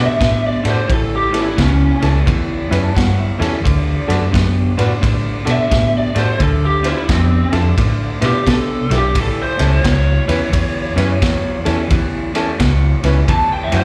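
Heard through a club PA with roomy reverb, this soulful, laid-back electric blues shuffle at 87 BPM in A mixolydian features an overdriven lead guitar soloing over a woody upright piano with audible action noise that adds a fill at 2.3 seconds. Beneath them sit a slightly broken-up rhythm guitar riff with spring reverb, a round, foam-muted bass sitting up front, and a gritty garage drum kit with a boomy kick and dark cymbals entering at 0.2 seconds, all moving through D, A and Dm7 in a passage cut from a longer piece.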